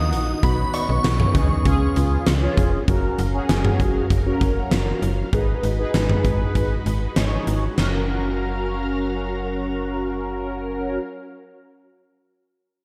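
A huge arena drum kit with a fat snare and punchy kick sits up front in this upbeat yet wistful synth-pop passage in F# major at 98 BPM, pounding in a big room alongside china cymbal, cowbell and toms until 7.9 s, while a snappy FM bass with a metallic attack drives the low end. A mellow, round synth brass with detuned sawtooth tone, vibrato, chorus and phaser carries the accompaniment over vintage organ-like string chords set in the background. A dreamy, bright bell with phaser and tape echo shimmers briefly at the opening before falling away by 1.9 s, and the mix is dark, with a lush hall reverb, in this section cut from a longer piece.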